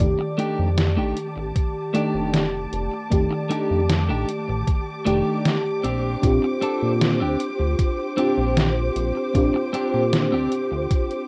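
A faded, dreamy vaporwave fragment at 77 BPM opens on a thumpy, up-front electronic kick and a detuned 8-bit drum machine's hi-hat and medium-tuned snare, both re-recorded in a small room, beneath a lush FM electric piano with a soft pad layer, chorus and delay, distant woody strings holding vibrato-laden chords, and a glossy, nasal chorused synth bass, while a clean, compressed electric guitar enters at 0.2 s with a chorus-soaked, delayed riff as the harmony moves from F13 to Bb69 at 5.8 s, all colored by light reverb and a rough cassette-demo haze.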